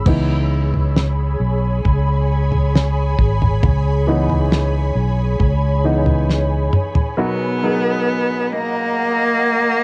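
A slow, heartbroken pop ballad at 67 BPM opens on a present, polished grand piano with short sustain, taking a solo over an ethereal pad of detuned sawtooth and triangle voices that swell in slowly and linger. Beneath them, a dark, round electric bass sits up front, and a damped 70s drum kit with a fat snare, tight kick and rolled-off top holds a straight 4/4 over a longing C#m7, ending in a fill around 6.3 seconds. At 7.2 seconds the harmony moves to Bmaj7 as a clear, focused bowed cello enters with vibrato. The piano, pad, drums and cello all carry cassette tape colour in a small, homemade room sound.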